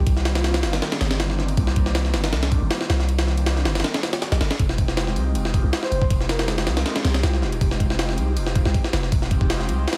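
Frenetic and raw, this drum and bass excerpt sets a gritty, pitched-up jungle sampler kit with a thumpy kick, high-tuned snare and ride cymbal up front beside a deep, mellow 808-style sine bass, while an airy pad with chorus and phaser sustains Cm9 into Fm9 in the background and a breathy flute-like lead with tremolo, a cassette tape effect and dub echo surfaces briefly at 0.4 and 5.8 seconds, all in an echo-heavy mix dusted with vinyl crackle.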